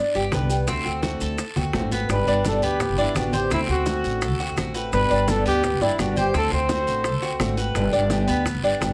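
A breathy, dark-toned trumpet with vibrato takes an intimate jazz-style solo from 2.1 to 7.5 seconds over a relaxed Cuban son and guajira groove, where a bright, metallic tres plays arpeggios, a woody, growly pizzicato upright bass sits up front, a boxy fingerpicked old ladder-braced acoustic guitar with finger squeak accompanies, and soft-handed bongos and ringing congas, a raspy guiro and grainy maracas fill out the percussion, with a drum fill at 1.6 seconds in this short excerpt cut from a longer piece.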